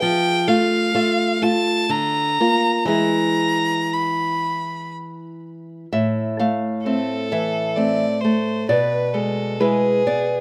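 Romantic duo for violin and classical guitar: a solemn, melancholic excerpt in A minor, moving in a rubato 3/4 at roughly 58-66 BPM. A single bowed violin carries the melody with a rich, focused tone, vibrato and a smooth top, while a dark, small-sounding nylon-string guitar fingerpicks the accompaniment through chords from F and Bb/D to E, then Am at 5.9 s and E7/B at 8.7 s. Both instruments sit up front in light studio reverb, with the guitar slightly louder, in a rough home demo mix.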